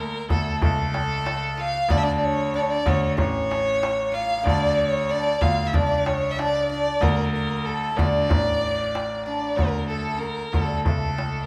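Melancholic and longing, this Arabic maqam ensemble piece in D maqam nahawand moves at 94 BPM in a straight 4/4, with a focused, up-front bowed violin singing the melody with vibrato over a woody, plectrum-plucked fretless oud on the second line, a brilliant concert grand piano with short sustain holding the bass, and a crisp, compressed, saturated metal-shell darbuka, all set in a moderate recital hall reverb and tuned to A4 = 437 Hz.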